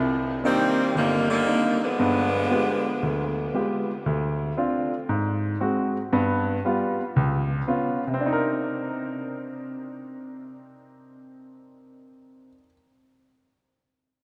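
A warm saxophone section carries the melody up front with vibrato and a tight, jazz-style blend, entering at 0.4 s and stopping at 3.5 s, its diffuse ambient delay trailing into the space. This swinging, sultry jazz passage in C minor moves at 116 BPM in 4/4, with the eighth notes swung. A clear, polished baby grand piano sits present and up front as accompaniment throughout, playing on alone once the horns fall away. The harmony opens on Cm9 and G7b9, passes through Dm7, Ab7, G7 and Db7, and comes back to Cm9 at 8.2 s. A huge ambient reverb soaks the whole mix, giving the clip, cut from a longer piece, a dreamy, lingering atmosphere.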